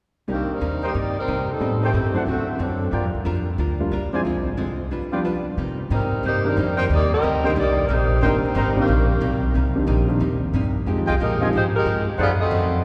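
Jazz in C minor at a brisk 182 BPM with a swing feel, this short swinging, brassy passage is cut from a longer piece. A mellow saxophone section carries the melody up front with vibrato, soft attacks and a tight, vintage blend, pausing at 2.9 seconds and returning at 5.9 seconds. Beneath it, a woody, growly upright bass with steel strings is played pizzicato and sits up front, while a clean, compressed hollow-body archtop guitar, picked and amplified, adds accompaniment. A concert grand piano in the background offers an intimate, natural tone with deep bass and audible action noise. A smooth-topped trumpet section punctuates the music with stabs from the background. The whole ensemble rings in a church or concert hall, bathed in a long, wet reverb that lends the harmony, moving from Cm7 through Am7b5 and D7 to Fm9 and F#dim7, a spacious glow.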